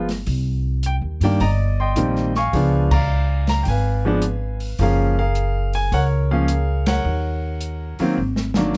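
A relaxed swing at 106 BPM in 4/4 carries this short, sophisticated jazz piano trio passage, cut from a longer piece and played in a dry, close-miked sound. A baby grand piano with long sustain carries the melody up front over chords moving from Cm9 through Db7b9, Gbmaj9 and Ebm7 to Absus2, while a woody pizzicato upright bass on steel strings holds the low end beside it. An airy drum kit with dark cymbals, a medium-tuned snare and a boomy kick sits further back, joining the band in accents at 2.8 and 6.8 seconds before a drum fill from 8.2 seconds rounds off the passage.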